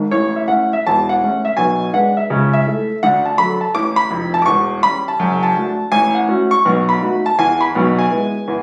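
Exuberant and swinging, this brief stride piano passage in A major moves at a brisk 165 BPM in 4/4, its eighth notes carrying a firm swing lilt. A clear grand piano plays alone for the full 8.6 seconds, ranging from a deep E1 up to D6 and sitting up front with an intimate, natural character. Audible action noise from the instrument adds a close, tactile presence to the sound. The harmony travels from A through diminished passing chords to D, then on through F#m/A and B7 before arriving on E, giving the phrase a sense of forward motion. A moderate small-room reverb surrounds the piano, and the phone capture lends the passage a candid, in-the-room quality, with the tuning sitting slightly below standard pitch at A4 = 435 Hz. It is cut from a longer piece.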